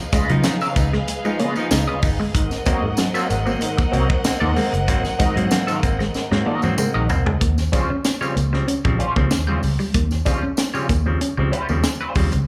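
Heard through a club PA with a small, lightly reverberant room around it, this strutting, gritty funk excerpt moves at 95 BPM in a straight 4/4, its dry drum kit with a high-tuned snare sitting up front over a round, punchy, foam-muted fingered bass. A dark, woody string section holds lush bowed chords over Db9 and Ab9 until 7.4 seconds, while a twangy, slightly broken-up guitar with wah and slapback echo plays accompaniment, a clean, mellow guitar plays a low riff, and a stringy overdriven clav fires auto-wah stabs. A drum fill from 6.1 seconds leads into a second section on Eb13, with a jingly tambourine shimmering faintly behind the band.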